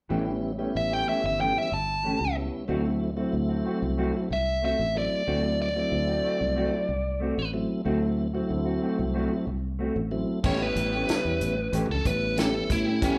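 Straight-eighth soul blues, laid-back and rollicking, cut from a longer piece: a biting, overdriven lead guitar carries the melody up front over a mellow tonewheel organ with key click and a slow rotary speaker, phased stabs from a clean, fingered electric guitar and a round, foam-muted fingered bass, moving from A7 to D7 before a roomy soul drum kit with dark cymbals joins at 10.4 s, the whole band playing live in a large studio room.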